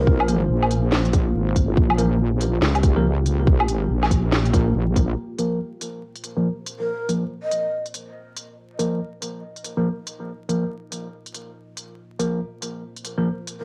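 A breathy shakuhachi phrase with dub echo and a deep, moody pad open this meditative, heavy excerpt of half-time deep dubstep at 141 BPM in Bb dorian, as a saturated wobble bass and a tight, up-front electronic kick drive the first section until 5.2 seconds, while a garage kit with a cracking snare, crisp hats and woodblock carries on beneath bell-like tine electric piano stabs that take a filter sweep from 5.2 seconds, all under light reverb, the warmth of a cassette home recording and vinyl crackle.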